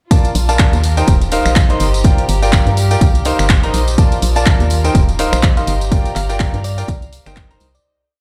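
The track sounds as if it is played through a big sound system in a bare room, wrapped in a large studio reverb. It is a short, joyful and euphoric piano house piece with a swung sixteenth feel, running entirely as a drop before a fade-out from 5.3 seconds. An overdriven, punchy electronic kick drives a four-on-the-floor pulse up front. An overdriven analog drum machine adds programmed snaps, handclaps, closed and half-open hats and tambourine, and a very quiet, close and dry acoustic tambourine sits underneath. A brilliant grand piano with long sustain plays dotted-rhythm chords in drop2 voicing through tape echo and sidechain pumping, moving through major-seventh, sixth and minor-seventh chords. A hollow, organ-like FM bass plays a dark dotted-rhythm line, while a reedy studio string section with a gut-string tone holds slowly shifting chords in the background, and a round, tine-like synth pluck with a warbling chorus enters at 5.3 seconds for short phrases.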